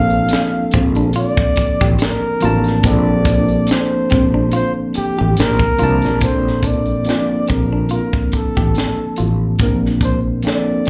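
A breathy, close-miked flugelhorn carries the melody as a dark jazz solo with light vibrato and a punchy attack, colored by slapback and tape echo. This is a soulful, smooth R&B and neo-soul excerpt in Bb major at 71 BPM in 4/4, with a gentle swing on the sixteenths, opening on a Bbmaj9 chord. A worn, slightly out-of-tune tine electric piano supplies clean accompaniment through its built-in speakers. Behind it, a fingered semi-hollow electric guitar plays a hollow-body second line in the background, and both carry slapback echo. Up front, a growly, direct fretless bass sits low under a lush chorus and stops at 10.3 seconds, while a tight funk drum kit, with a high-tuned snare, tight kick and hi-hat, enters at 0.1 seconds from a small room. The take sounds like a live gig heard through the venue's PA, with light club reverb, and it moves into a new section at 6.2 seconds.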